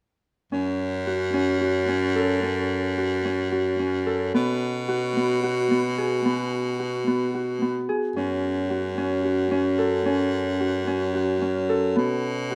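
Restless and urgent, this contemporary instrumental chamber piece moves in an uneven 7/8 at 220 BPM counted in eighths, with a straight feel in F# minor and tuning set to A4 = 445 Hz. A Celtic harp plays arpeggios from 0.5 to 12.6 seconds, its thumb-plucked, ringing tone sitting up front in the range from B3 to A4. A raspy baritone saxophone carries the bass line across the same span, gritty and edgy with a light vibrato, close-miked and placed up front in a pop-style solo voice between F#2 and B2. The harmony alternates between F#m and B5, shifting at 4.3, 8.2 and 12.0 seconds. Light reverb surrounds this short cut from a longer piece.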